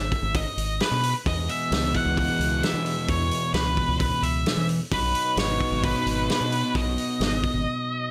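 Set in a moderate studio reverb, this carefree, upbeat indie rock excerpt in E major at 131 BPM opens with a dark, up-front octave-fuzz lead guitar carrying the melody through slapback echo, a growling, overdriven fingered bass and a loose, gritty drum kit with a punchy kick and rolled-off top, before a crunchy overdriven guitar riff joins at 1.2 s and a twangy, lo-fi guitar through a small old amp adds a chorused, slapback-echoed riff in the background from 1.3 s, moving over B, E and Badd9 chords until a brief break at 7.7 s.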